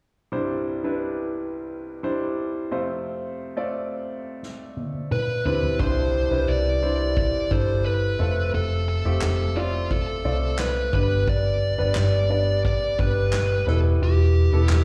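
A fuzz lead guitar carries the melody in this anthemic, piano-driven pop excerpt, its distorted, picked tone sitting up front with a slapback echo from 5.1 seconds. Before it arrives, a clear concert grand piano opens the piece alone at 0.3 seconds, playing a polished, present accompaniment with deep low notes, short sustain and its own slapback echo over Cadd9 and F chords. A soft-mallet drum kit enters with a fill at 4.4 seconds, sounding distant and roomy, with a punchy kick, a medium-tuned snare, toms, handclaps and dark, rolled-off cymbals. At 5.8 seconds a vintage muted fingered electric bass joins, round and amped, standing as the loudest part in the mix as the chords move through Cadd9, F, G and Em. The steady 88 BPM in 4/4 moves with a straight feel. The performance is heard like a live gig through a venue's PA, with light recital-hall reverb, and the overall mood is warm.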